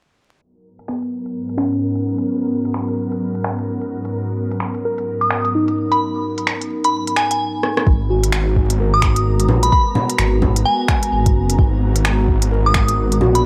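Future garage at 129 BPM in G# minor, this nocturnal, melancholic excerpt from a longer piece swings its 16ths over an ethereal, airy pad holding a G#m9 chord with sidechain pumping, while muted, felt-like synth keys sweep through a filter and an up-front organic electronic kit of bongos, finger snaps, smooth hats and rim clicks carries overdrive. A glassy, crystalline FM bell enters at 5.2 seconds with a warbling tremolo, tape echo and vintage 12-bit grit, and after a drum fill at 7.6 seconds the second section brings in a menacing, detuned saw bass with a filter swell alongside a soft, overdriven kick at 7.9 seconds. Light digital ambience and vinyl crackle wrap the mix in a dusky haze.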